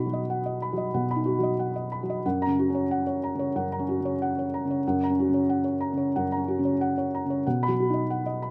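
A felt-muted upright piano, mellow, close and up front in a light reverb, plays alone through this 8.5-second fragment of an intimate, hopeful neoclassical minimalist piece, moving with a rubato feel from a B chord to F# at 2.2 seconds and back to B at 7.5 seconds.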